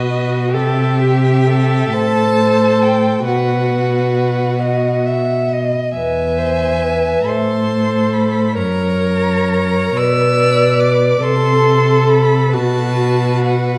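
Solemn and elegiac, this fragment of a slow romantic string-quartet movement sways in a rubato 6/8. A focused, distant first violin carries the melody with vibrato over the expressive portamento of a rich second violin and the smooth, even viola accompaniment, while an up-front, clear cello anchors the bass, all bowed by single players within the dark, lingering reverb of a recital hall.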